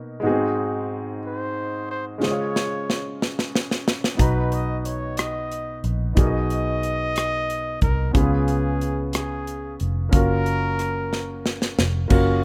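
Reverent and uplifting, this slow gospel excerpt in 6/8 at 61 BPM sits in F# major, moving from G#7 through Bmaj7 and C#7 to a closing F#maj7. An intimate, up-front grand piano with audible action noise accompanies from the start, a breathy solo trumpet with scooped, jazz-style notes carries the melody from 1.3 s, and a polished, airy drum kit with a punchy kick enters on a fill at 2.2 s. A dark, round, foam-muted electric bass joins at 4.2 s, all set in studio reverb within a rough home-demo mix.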